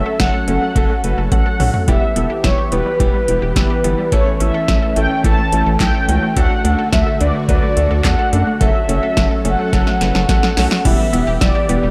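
Synth-pop with a cool, melancholic air, this short passage cut from a longer piece moves at 107 BPM in a straight four. A mellow synth brass carries the melody, brassy and dark with a ring-modulated edge and vibrato, wrapped in chorus and a diffuse ambient delay. Beneath it a round, deep analog bass anchors the low end, while in the background a brilliant concert grand piano, a vintage string machine playing violas with ensemble chorus, and a detuned sawtooth analog pluck spinning arpeggios through chorus and delay fill out the harmony over a progression that cycles from F#m through Em, A and D. The overdriven electro drum machine sits up front with a punchy snare, metallic hats and handclaps, and it rolls into drum fills at 1.3 and 9.7 seconds before a shift to Em at 10.9 seconds opens a brief new section. A moderate plate reverb soaks the mix in a dreamy haze.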